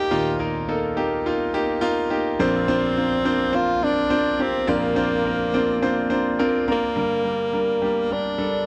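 A breathy, whispered tenor saxophone carries the melody up front with light vibrato, a soft attack and a slapback echo, its intimate pop-style solo set against a polished concert grand piano with deep bass and short sustain. This hopeful, anthemic pop passage in Bb major moves at 105 BPM in a straight 4/4, with chords shifting from Eb to Bbadd9 and reaching Gm at 7.0 seconds as a new section begins. The sound is dry and close, with light reverb, in the manner of a 1970s studio, and the clip is cut from a longer piece.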